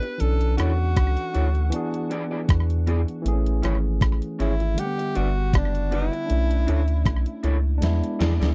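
A bright, vibrato-laden tenor saxophone sings a sweet, tender lovers rock reggae melody through tape echo, over barky tine electric piano, dark and slightly broken-up guitar stabs from a small old amp, a round, deep analog bass entering at 0.2 s, and an up-front gated 80s drum machine with a thumpy kick and gated-reverb snare that ends on a fill at 7.8 s, all captured in a dry, close 1970s-style studio sound.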